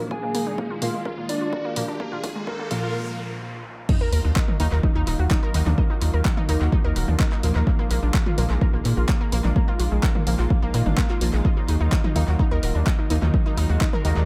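Cinematic and hypnotic, this melodic techno passage, cut from a longer piece, opens on a build-up where a riser climbs and a noise sweep follows over filtered arpeggios from a lush, detuned unison pluck, while a bold, fat analog synth brass states the melody and a glassy, crystalline wavetable pluck traces a second line in the background until 2.9 seconds. A punchy kick sits up front from the start, joined by a layered deep house kit of handclaps, hi-hat, toms and crash cymbal, with a drum fill leading into a short break. At 3.9 seconds the drop lands with an impact and sub drop, and a round, deep analog bass with tube saturation enters up front at 4.1 seconds. Beneath it all, a thick, sustained unison pad holds chords shifting between Bb7 and Ebmadd9, a faint, warbling analog drone hums very quietly, and bright brass stabs with chorus and phaser flicker in the background. Sidechain pumping breathes through the pad, plucks, stabs, bass and cymbals, and tape echo trails the melodic parts, set in a light digital ambience with an echo-heavy mix and a faint mains hum.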